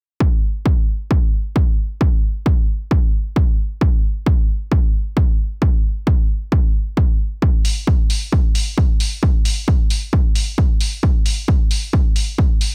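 A straight 4/4 techno pulse at 133 BPM drives this industrial, hypnotic fragment of a longer piece, built on a heavy, layered, tape-warm electronic kick that sits up front with the close feel of a small room, joined at 7.6 seconds by a quieter analog hi-hat pumping under sidechain, all in a dry mix.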